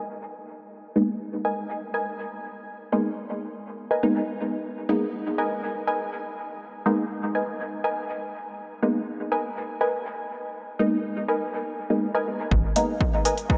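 A warbling, lo-fi sawtooth pluck opens this cavernous, hypnotic dub techno fragment, its riff pumping under sidechain and trailing dub echo, joined at 1.0 s by muted, detuned chord stabs carrying chorus, phaser and echo over a G#madd9 harmony. The whole dreamy mix is soaked in a huge ambient reverb with a long tail. At 12.5 s the stab gets a filter sweep as a punchy, overdriven kick arrives up front with a brief, smooth sine sub bass note, followed at 12.8 s by an overdriven hi-hat.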